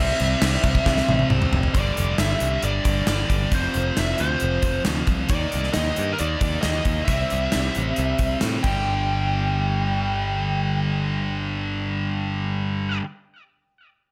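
Anthemic and swaggering, this short hard rock passage cut from a longer piece drives along at 135 BPM in a straight 4/4. A biting lead guitar, overdriven and touched with tape echo, carries the melody high over two riffing guitars: a crunchy overdriven part sitting in the background and a scooped, high-gain distorted part with a bright edge. Beneath them, a modern picked electric bass sounds punchy and direct, while a gated 80s drum kit sits up front with a punchy kick, a medium-tuned snare, bright cymbals and toms in a polished stone-room sound. The drums come in at 0.2 seconds and throw a fill from 0.9 to 1.7 seconds before the harmony moves through G5, F5 and Eb5 power chords. They fall away at 8.7 seconds after another fill. The guitars and bass carry on through the closing stretch, all of it set in light reverb and small room ambience.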